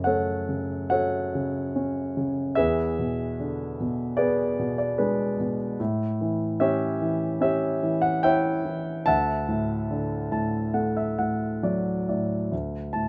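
Flowing in a rubato 4/4 at roughly 66-77 BPM, this calm, lyrical classical passage, cut from a longer piece, features a solo grand piano with a warm, up-front tone and light reverb, ranging from D2 to A5 in D major (tuned to A4 = 436 Hz) as it moves through F#m, E7 and A7 to a Dadd9, with a piano fill from 9.9 to 12.5 seconds before settling on D5.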